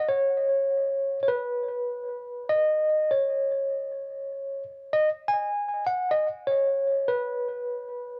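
Languid and dreamy, this brief Hawaiian-flavored fragment cut from a longer piece features a lone tine electric piano, clean and up front through a combo amp with medium tremolo, analog delay and a cassette-tape haze, swinging gently in 4/4 within a modest studio reverb on a home cassette recording tuned slightly below standard pitch.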